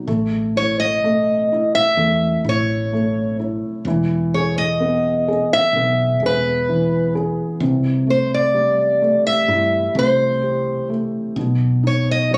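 Nostalgic and tender, this short excerpt from an acoustic folk-pop ballad pairs a soft, felt-muted upright piano with a woody, round fretless electric bass, while a dark, up-front picked steel-string acoustic guitar carries the melody with audible finger squeak and plate reverb, all caught on a phone in a room with a club-like ambience as the chords move from A through Emaj7 and C6 to B.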